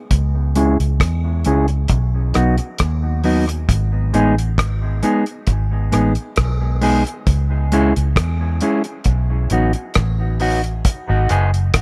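An echo-heavy studio mix frames this deep, heavy dub reggae piece at a slow 67 BPM in G# phrygian, where a round, foam-muted vintage fingered electric bass and a cloth-damped, thuddy drum kit with tight kick, hi-hat and rim click sit up front from 0.1 seconds, while a mellow, clean electric guitar enters at 0.6 seconds, carrying a filter sweep and dub echo over chords moving from C#m through B to G#m.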